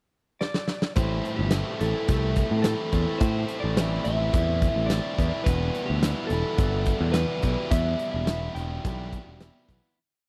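Brooding and swaggering, this short classic rock piece moves in a straight 4/4 feel with a dry, close 1970s-style studio sound. It opens with a drum fill from 0.4 seconds on a big rock kit, its fat snare and punchy kick sitting up front with a rolled-off top, while a dark, slightly broken-up lead guitar begins its compressed, motif-based melody at the same moment. At 1.0 seconds the verse arrives over an A minor chord, with a biting, bright overdriven guitar, double-tracked, driving eighth-note open chords and a growly picked electric bass pushing a syncopated riff up front. The harmony shifts to E minor at 5.5 seconds as the drums keep a big rock groove beneath the song-like guitar phrases. A fade-out begins at 7.7 seconds and carries the piece to its close.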